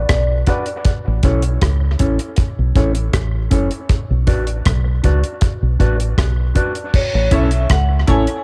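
A round, punchy fingered electric bass sits up front in this hazy, spacious dub reggae excerpt at 79 BPM in A major, moving between Bm and A. A dry acoustic drum kit with a tight kick, hi-hat, rim click and crash cymbal carries cassette grit, and a dark, clean electric guitar plays accompaniment through low-pass filtering and tape echo. A ringing, metallic vibraphone with slow motor vibrato touches the opening and returns with the melody at 7.0 seconds, a woody, slightly detuned upright piano adds brief echoed stabs with audible action noise, and small-room ambience gives the piece a home-cassette feel.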